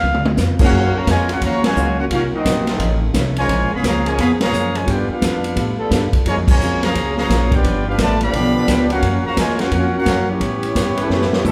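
Heard from further back in a large studio with a wet reverb, this joyful big-band swing excerpt opens on a drum fill before a bright trumpet section takes the melody from 0.6 s, with a mellow, vibrato-tinged trombone section on a second line and a brighter trombone section holding sustained chords in the background. Underneath, a woody, growly pizzicato upright bass and a punchy, up-front drum kit keep the swing going, while a dark, clean hollow-body archtop guitar plays accompaniment in the background and a grand piano sounds only a brief touch at the start. Band accents punctuate the lush jazz harmony, and another drum fill closes the cut at 11.1 s.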